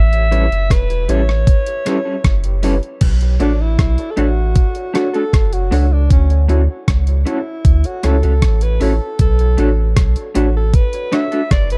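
Sweet and smooth, this excerpt of lovers rock reggae moves at 78 BPM in 4/4 over an A7 to Bm7 to Dmaj7 progression, anchored by a round, deep sub bass and a detuned 8-bit drum machine with a thumpy kick, hi-hat, rim click and crash, both sitting up front. A subtoned alto saxophone with light vibrato, scooped notes and dub echo carries the melody and takes a jazz-style solo from 3.0 s, while a lo-fi, slightly broken-up electric guitar with tremolo plays picked stabs. A gritty, overdriven tine electric piano with fast tremolo and dub echo sits in the background, all within a dark, warm, dry production.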